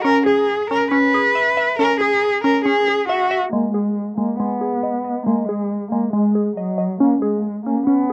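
A hazy home cassette recording with light reverb and a dulled top end opens this cold, tense fragment of a longer hip hop piece, set in a half-time feel. Up front, a single bowed cello carries the melody with a rich, expressive voice, softly attacked, leaning on vibrato and gliding portamento between notes, and tinged with the grain of tape. Beside it, a glassy wavetable pluck plays the accompaniment, its crystalline, detuned tones striking fast and then decaying, warbling through chorus and ring modulation with a vintage digital edge. The harmony moves from C#m to G#m and then settles on a bare C#5. At 3.5 seconds the music shifts into a new section, and a filter sweep begins to reshape the pluck until the cut at 8.1 seconds.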